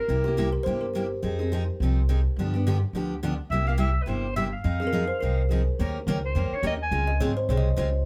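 A swinging 4/4 at 211 BPM drives this bittersweet excerpt of acoustic string swing in F minor, with a thumpy, woody upright bass and a picked steel-string acoustic guitar with fresh-sounding strings holding the accompaniment from the first moments to the end, as the harmony moves from C7 and Fm7 toward Eb7 and Dbmaj7 in the closing section from 5.8 seconds. A bright clarinet carries the melody with vibrato and scooped notes, sounding distant and roomy under a slapback echo, touching a brief phrase at the start before returning at 3.5 seconds. A ringing kalimba with a thumbnail pluck adds a boxy second line in two stretches, all set in light reverb.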